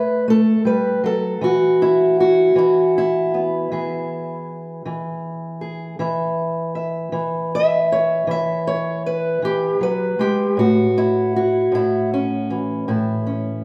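A fingerpicked steel-string parlour guitar sits up front, its dark, woody, boxy tone and old strings giving this swaggering, soulful acoustic country blues a lived-in character. Played solo at a slow 52 BPM in a straight 12/8 in E major, it opens on an A7 chord, settles on E from 1.4 seconds and moves to A at 10.6 seconds, spanning A2 to E5. The guitar rings out in the lingering reverb of a recital hall, and the short passage is cut from a longer piece.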